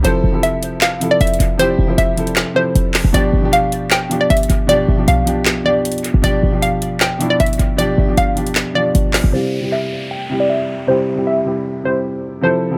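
Wistful yet triumphant, this half-time trap cut opens with a hollow, bouncy square-wave pluck carrying the melody through chorus and dub echo over a clear, up-front concert grand piano moving through Fmaj7 and G7 chords. A punchy, tight 808-style bass and an electronic trap kit of handclaps, metallic hi-hats and a woody snare drive the groove until about 9.3 seconds. Then an electronic downlifter, first heard briefly at the very start, returns with a filter sweep to carry the piano and pluck onto a C chord in a light, echo-heavy mix.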